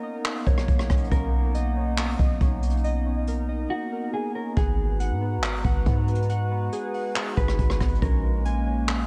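A warbling, tape-like pad holding sustained chords and nostalgic lo-fi synth keys playing airy, detuned arpeggios open this hazy, ethereal excerpt of atmospheric cloud-rap. Both carry chorus, with the pad bathed in its own built-in reverb and the keys trailed by tape echo. Within the first second, a jazz brush drum kit arrives up front, its boomy kick, hi-hat, rim click and handclaps roughened by vintage 12-bit sampler grit, at 139 BPM in 4/4 with a half-time feel. A deep, sine-based 808-style bass joins alongside a dark, clean, fingered electric guitar carrying the compressed melody, touched with subtle chorus and tape echo. After a break from 3.7 to 4.6 seconds, the harmony moves from Bmaj9 to G#m7, later settling on A#m7, all within small room ambience and tuned to A4 = 438 Hz.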